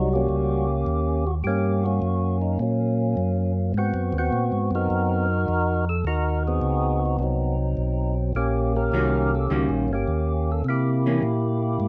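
A swung 4/4 groove at 104 BPM drives this soulful, bluesy jazz excerpt, cut from a longer piece and tuned slightly flat to A4 = 437 Hz. A percussive tonewheel organ carries the melody from the start, its fat, lightly overdriven tone sharpened by third-harmonic percussion, vibrato and a slow rotary speaker, with a touch of plate reverb. Beneath it, a second tonewheel organ plays the bass line, round and clean with audible key click, also turning through a slow rotary speaker, both organs sitting up front. The harmony moves from Eb7#9 to Ab7#9 and back, closing on C7b9. At 8.9 seconds a dark, clean hollow-body electric guitar joins with picked accompaniment, dropping out at 11.2 seconds. The production is dark and warm, with a moderate studio reverb giving the ensemble a modest sense of room.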